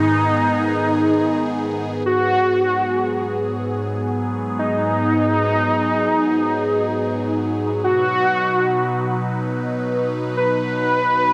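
In free time, this nocturnal, cinematic synthwave fragment, cut from a longer piece, sets a bold, bright unison lead with vibrato, lush chorus and delay over a swirling, wave-folded analog pad whose phaser and chorus keep its slow-attack sustained chords evolving throughout. Both parts sit up front, the thick detuned sawtooth-and-triangle lead carrying the melody while the full-bodied pad holds G#m, shifts to G#m7 at 2.1 seconds and settles on B at 7.8 seconds. A moderate recital hall reverb adds digital ambience around them.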